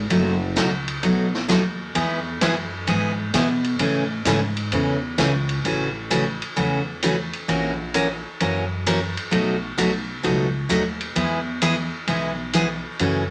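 Set in a lush studio reverb, this swinging, down-home western swing passage is cut from a longer piece and puts a bright, full-bodied picked dreadnought guitar up front as the main accompaniment. Beneath it, a woody, thumpy pizzicato upright bass and a vintage drum kit with a mellow, rolled-off top keep the swung feel on hi-hat, ride cymbal and a medium-tuned snare. The guitar moves through chords such as B7/F#, E and Amaj7 before a new section at 5.6 s turns through A6, F#7/A# and B7 and settles back on E.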